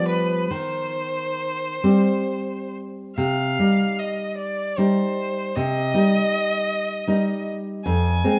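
A clear, vibrato-rich bowed violin and a full-bodied, fingerpicked nylon-string guitar open together in this yearning, elegiac romantic duo in C minor, moving in a rubato 6/8 at roughly 44-54 BPM: the violin sings a focused melody between B4 and Ab5 over the guitar's deep classical accompaniment, which sits a little louder and moves from G7/F to Cm/Eb, with a new passage arriving at 3.2 s and an Fm chord at 7.8 s, the whole fragment, cut from a longer piece, heard in a wet recital-hall reverb, with the violin carrying a slightly distant air.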